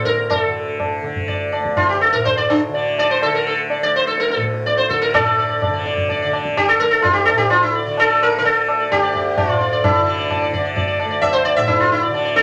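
A plectrum-plucked sitar, up front with buzzing sympathetic strings, and a bright, softly plucked shimmering tanpura drone open this longing, solemn Hindustani classical fragment in 5/4 at 127 BPM (tuned to A4 = 441 Hz), joined at 0.1 s by close, dry, high-tuned tabla with a short ring, the tempo speeding up throughout as the music moves into a new section at 5.1 s within a reverberant studio ambience.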